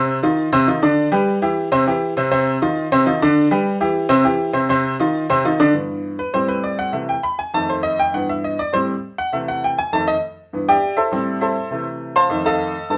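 A straight 4/4 pulse at a brisk 201 BPM drives this sunny, festive latin excerpt in G major, played on a baby grand piano that ranges from F2 to C6. The piano sits up front and sounds worn and intimate, with audible action noise and a short sustain, all set in a wet studio reverb. It cycles through F5, G6, C and Cmadd11 before opening at 5.7 s into a solo over Am7, C6, F7 and G6 that runs to 13.0 s.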